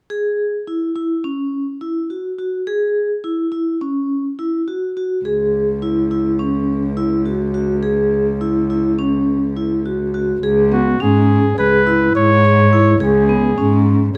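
Set in a straight 9/8, this contemporary chamber music moves in an uneven meter that feels hypnotic and urgent. A vibraphone played with medium mallets opens alone, spinning ringing, metallic arpeggios with a fast motor vibrato, its close-miked sound dry, full and up front. At 5.2 seconds a single bowed cello joins beneath it, holding down the bass with a dark, woody tone and vibrato. Shortly after the music moves into a new section, a solo flugelhorn takes up the melody at 10.7 seconds with a punchy, pop-style delivery and light vibrato, sitting a little louder than the other parts. Light reverb surrounds the trio, and the passage, cut from a longer piece, breaks off at 14.2 seconds.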